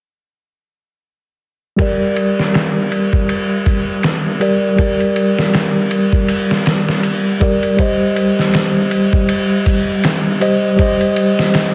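A swung 80 BPM trip hop beat in G minor, from a sampler-style kit of thumpy pitched-down kick, medium-tuned snare and ride cymbal carrying 12-bit grit and a large-room sound, enters together with an up-front, mellow tine electric piano at 1.8 seconds, its harmonic tremolo, tape echo and filter sweep shading a brooding, hypnotic move from Gm to Cm/G at 7.8 seconds, all under light digital reverb and a heavily compressed radio-like finish in this excerpt from a longer piece.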